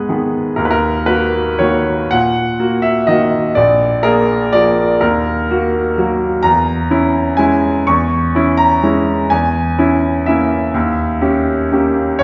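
A rubato waltz in 3/4, drifting between 110 and 132 BPM, sets an elegant, nostalgic mood in this classical solo piano fragment cut from a longer piece. The bright grand piano, brilliant and smooth with a vintage character and long sustain, sits up front and spans from A#1 to C#6. Its harmony moves from G#m and D#m through A#7 to C#m/E before settling on D#7b9 at 10.7 seconds, all bathed in a wet recital hall reverb that is heard from further back in the room.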